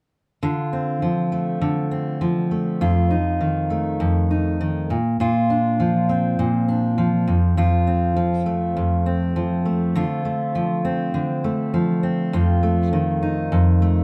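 A straight 4/4 pulse at 101 BPM carries this wistful, tender pop fragment in D minor, cut from a longer piece, with a lone fingerpicked steel-string acoustic guitar playing the accompaniment from 0.4 seconds onward. The full-bodied jumbo guitar sits up front, cycling through Dm7, F7, Bbadd9 and F before a new section at 10.0 seconds returns to Dm7 and F7. A wet studio reverb with a short tail surrounds the guitar's warm sound.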